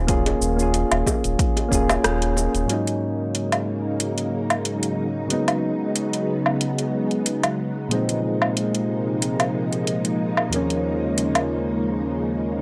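A lightly swung 4/4 groove at 92 BPM opens this wistful sunset chillout excerpt in G# dorian, as an overdriven deep house kit of metallic hi-hat, cabasa, rim click and woodblock sits over a punchy electronic kick that stops at 1.9 s, tight high-tuned bongos tick in the background, and a round, deep analog bass holds D#1 until 2.7 s, while soft electric-piano-like synth keys with chorus and analog delay carry mellow ninth sus4 chords throughout and a silky vintage string machine enters at 3.1 s with slow-attack sustained chords, all set in light reverb with a gritty, transformer-saturated hardware sound.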